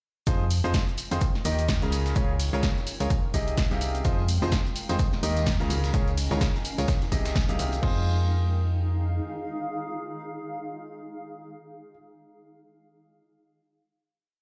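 Energetic and soulful, this short piano house piece in F minor drives at 127 BPM with swung sixteenths: a clear concert grand plays dotted-rhythm chords through tape echo and sidechain pumping over a round, dark FM bass and an up-front four-on-the-floor electronic kick, while a punchy analog drum machine adds hats, shaker, snare and crash, a very quiet gritty breakbeat loop sits beneath, tambourine and congas ring in the background from 4.0 s, a blurred, evolving granular pad drifts in at 1.1 s, and after a band accent at 7.4 s the drums and percussion drop away to leave the piano, pad and briefly lingering bass on a final Fm7 chord in a stone-room ambience.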